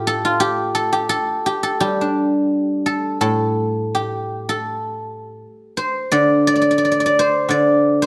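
In a free, rubato pulse over a loose 4/4, a solo guzheng unfolds a longing, contemplative passage of Chinese traditional music, an 8.1-second fragment cut from a longer piece. Played with fingerpicks, the acoustic zither sounds silvery and ringing, spanning A2 to D5 as it sits up front in close, detailed miking with a light touch of reverb.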